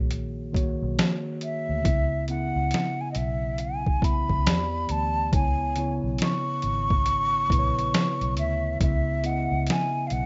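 A lazily swung 16th-note groove in 4/4 rides on a gritty, pitched-down trip hop sampler kit with a thumpy kick and overdriven snare sitting up front, over a dark, round, foam-muted electric bass and a mellow tine electric piano softened by cassette tape. At 1.4 seconds a breathy, hollow concert flute takes the melody, close-miked with vibrato. This reflective, melancholic lo-fi hip hop fragment moves through minor seventh chords to a closing C#m9, in a dry, rough home demo mix with a dull top end.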